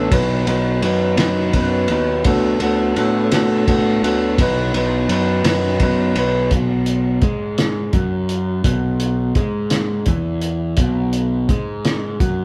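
This short cut from a longer indie rock piece sounds like a band playing live together in one room, with light reverb and a lo-fi, up-front closeness. In 6/8 at 56 BPM counted in dotted quarters, it moves in B major with an upbeat yet wistful mood, its chords shifting from B to D6 and back to B before settling on B5 at 6.5 seconds. An electric guitar through a small old amp carries the riff with a slightly broken-up, compressed, fingered tone. Beneath it, a picked electric bass pushes fuzz and overdrive into a punchy, warm low end. The cloth-damped drum kit enters at 0.1 seconds, sounding muffled and gritty with a rolled-off top: its kick is tight, its snare fat, and its hi-hat and ride cymbal dark.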